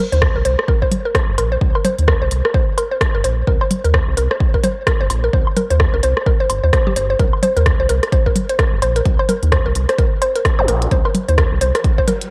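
Cool and sparse, this minimal techno excerpt rides a swung groove built on a punchy, overdriven analog kick and a rubbery, nasal square bass, both up front, with the bass pumping against the sidechain. A woody, round mallet-like synth pluck carries the riff through chorus and tape echo, while a clicky drum kit of hi-hat and rim click, layered congas and woodblock, and a zap and riser arriving at 10.6 seconds fill out the groove. Spring reverb and a cassette home-recording haze give the parts a worn, lo-fi grain.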